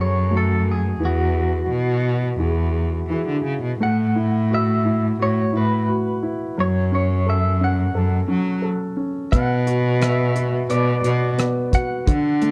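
Folk at 87 BPM in a reflective, intimate mood, this excerpt features a bright, twangy clean electric guitar carrying the melody with tremolo over natural, short-sustained baby grand piano chords and a rich, bowed cello bass line with vibrato, moving through F#madd9, Eadd9, A5, F#m and Bm before a cloth-damped, thuddy drum kit with a gritty, tight kick and rim clicks joins at 9.3 seconds, all set in light reverb with a dark production.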